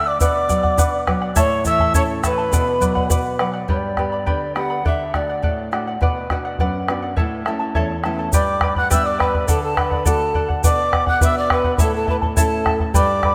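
A bright, polished pan flute carries the melody in this earthy, melancholic Andean folk piece in B minor at 104 BPM in 2/4, its crisp, chiffy attack and vibrato set against a breathy cane quena on a higher second line. Fingerpicked charango with shimmering double strings and a full-bodied nylon-string guitar accompany throughout, while a round bombo and a grainy egg shaker mark the straight pulse; the guitar plays a fill at 7.2 seconds before both flutes return together at 8.3 seconds. A lush, wet hall reverb surrounds the rough home-demo mix.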